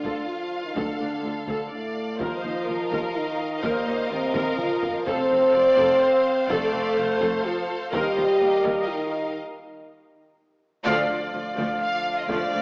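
Heroic and triumphant, this cinematic orchestral film-score cut at 125 BPM in 3/4 sets lush, vibrato-rich violins carrying the melody over a smooth, distant second violin line, even viola accompaniment, mellow French horn and bright, tight trombone chords, and background cellos, double basses and hard-stick taiko through a Dm, Ebsus2, F and Ebadd9 progression, with a drum fill at 4.3 seconds, a break at 9.4 seconds and an up-front vintage trumpet stab at 10.9 seconds, all bathed in concert hall reverb and worn, warbling cassette tape with small-speaker coloring.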